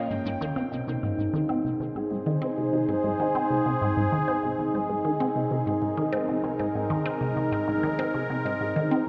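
Drenched in a wet spring reverb with echo everywhere, this short cut from a longer piece of cosmic, mysterious, sequencer-driven space music moves at 97 BPM in 4/4, tuned to A4 = 441 Hz and resting on an Ab chord. Up front, an evolving, detuned, wave-folded pad holds sustained chords with chorus, beside a squelchy, bright blip pluck riff carrying phaser and delay. Farther back, a ringing concert harp plays filtered, delayed arpeggios, and a filter sweep moves over the harp and a synth arpeggio sound from 0.1 s to the end.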